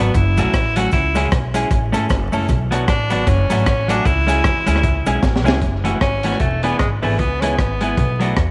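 A swung ska groove at 153 BPM in 4/4 drives this mischievous, energetic clip in F# minor, cut from a longer piece. The crunchy breakbeat kit sounds saturated and gritty, with a punchy kick, a high-tuned snare, rim clicks and hi-hat, and its rolled-off top is touched by tape echo, while a woody, thumpy upright bass is plucked underneath. A clean, compressed electric guitar with a dark tone sits up front, bathed in spring reverb and tape echo, and a very quiet, grainy cabasa adds texture until about 5.5 seconds. The bright tenor saxophone carries the melody with forceful vibrato, sounding roomy and distant yet prominent in the mix. A drum fill at 5.2 seconds leads into a new section at 5.6 seconds, where the chords shift to sevenths such as F#m7 and E7. The whole recording rests in an echo chamber under a layer of vinyl crackle.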